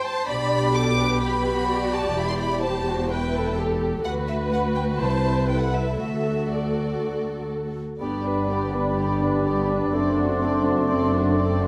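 A quick classical-period movement for symphony orchestra in G major, this graceful, cheerful passage moves at 125 BPM in 4/4 with a rubato feel, cut from a longer piece. The strings open together: a violin section carries the melody with a soft, intimate tone and light vibrato, while a second, darker and woodier violin section traces a supporting line and a lush, focused viola section fills in the accompaniment. From 0.3 seconds a smooth, even cello section and an expressive, distant double bass section anchor the bass as the harmony passes through G/B, Em, Bm/D and Am/C to D. At 8.0 seconds the winds and brass join for the closing phrase: a pure flute section sits in the background, a roomy oboe and a very quiet clarinet add second lines, a mellow bassoon supports the accompaniment, and a dark French horn section lays down soft, sustained chords over G moving to D7/F#. A wet scoring-stage reverb gives the ensemble a spacious bloom.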